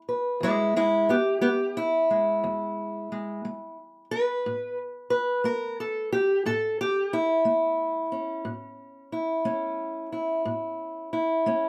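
A fingerpicked steel-string acoustic guitar carries this short cut alone, its old strings giving a woody, boxy parlour tone that sits up front in a moderate studio reverb. The acoustic country blues rolls at a laid-back 60 BPM in 12/8 with a straight feel, tuned slightly flat to A4 = 435 Hz, ranging from E2 to B4. The gritty mood rests on an E chord before moving to A at 4.4 seconds.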